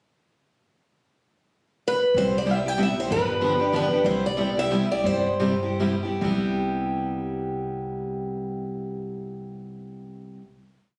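Captured on a phone in the room with a light touch of studio reverb, this short, playful and charming piece of acoustic string swing in waltz time opens with a brief pickup before a bright, boxy parlour guitar states a motif-based melody in period phrases from 1.9 to 5.8 seconds, over a woody gut-string upright bass plucking roots and fifths and a concert guitar picking every beat with short accents on two and three, the tune slowing down from about 4.1 seconds before settling on a final chord at 6.2 seconds.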